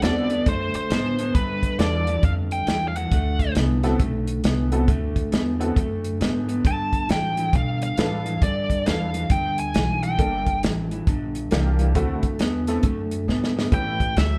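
A live band plays together in one large studio room, wrapped in a moderate reverb, in this short cut from a longer electric blues shuffle. At 136 BPM in 4/4 with swung eighth notes, the mood is rollicking yet laid-back, moving through D7, G7 and Gm7 before landing on A7. A biting, overdriven lead guitar carries the melody up front in bright, picked phrases that come and go across the clip. Beneath it, an electric guitar through a small old amp plays a dark, slightly broken-up riff with harmonic tremolo, while an upright bass lays down woody pizzicato lines on steel strings. A jangly, detuned honky-tonk upright piano adds vintage accompaniment until 14.0 seconds. The soul drum kit sits close and dry, with a smooth medium-tuned snare, a tight kick and hi-hat under a rolled-off top, and a drum fill arrives at 13.3 seconds.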